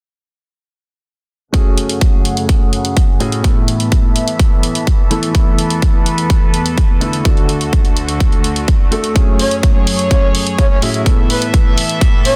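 At 1.5 seconds an overdriven, punchy kick drum and a layered electronic hi-hat launch this anthemic, euphoric festival progressive house excerpt alongside a dark, mellow baby grand piano trailing delay and a gut-toned, reedy string section holding sustained chords through a filter sweep, both pumping with sidechain over chords moving from F#madd9 through Asus2, Esus4 and D, until a breathy, flute-like synth lead with lush chorus, vintage 12-bit grit and vibrato enters at 9.4 seconds, all within a dense, heavily limited modern master.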